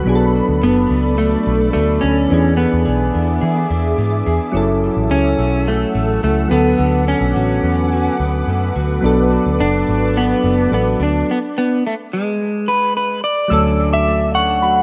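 A straight 4/4 pulse at 107 BPM carries this lonely, wistful indie pop fragment, cut from a longer piece and built on a Bm7, E7, F#m7, D6 progression. Up front, a round, punchy, foam-muted vintage electric bass anchors the low end beside a warm electric slide guitar that sings the melody with a slightly broken-up edge and lush chorus. Behind them, soft electric-piano-like synth keys warble with a mellow cassette-tape tint, while a lo-fi electric guitar through a small old amp sits in the background, dark and compressed, its pitch drifting under a subtle chorus. High above, an ethereal, airy pad holds detuned, wave-folded sustained chords with slow attack and built-in reverb until 11.3 seconds, where a stop arrives. At 13.5 seconds the music settles onto Dmaj7 as a pure, gentle FM synth bell enters with a second line, all framed in light reverb and the rough feel of a home demo mix.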